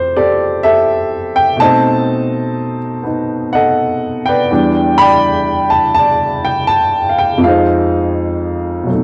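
A woody, up-front upright piano plays solo jazz in a sophisticated, warm mood at an unhurried 82 BPM swing in 4/4, its smooth vintage tone colored by cassette tape and a short, wet booth ambience as it moves through Fmaj9, B7b9, Em7 and Fm7 across this nine-second excerpt cut from a longer piece.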